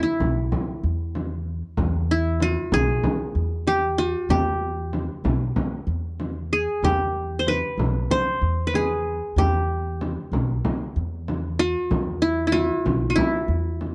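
Festive and warm, this short passage taken from a longer piece is an Arabic maqam ensemble in E maqam saba at a straight 95 BPM in 4/4, with a bright, plectrum-plucked qanun carrying the melody up front over a woody, dark pizzicato upright bass, joined at 0.2 seconds by a deep, large frame drum, all captured in a dry, close 1970s-style studio sound with light reverb.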